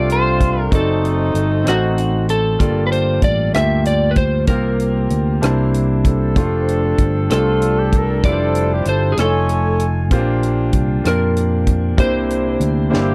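A slightly broken-up electric slide guitar, played with fingerpicks, carries the melody from the first moment of this slow, hopeful gospel piece in F major at 64 BPM in 6/8. Sounding alongside it from the start are a jazz-style horn section with vibrato and a smooth top, a brilliant concert grand piano with deep bass and long sustain, and a punchy, amped fingered bass. A tight funk kit with a high-tuned snare, rim clicks and hi-hat sits up front in the dry, close 1970s-style studio sound; the horns return at 6.1 seconds over jubilant extended chords, and a drum fill arrives at 12.9 seconds.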